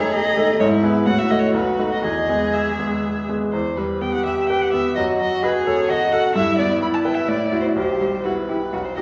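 All three players begin together in this quick, lively classical-period movement for piano trio in 3/4, moving at 120-131 BPM with a rubato feel. A smooth, even violin carries the bowed melody with vibrato up front, a rich, focused cello adds a second line, and a bright, brilliant baby grand piano supplies an intimate, polished accompaniment with audible action noise. The cheerful E major opening turns to E minor at 3.5 s, all heard from further back in a recital hall with a wet reverb tail in this excerpt cut from a longer piece.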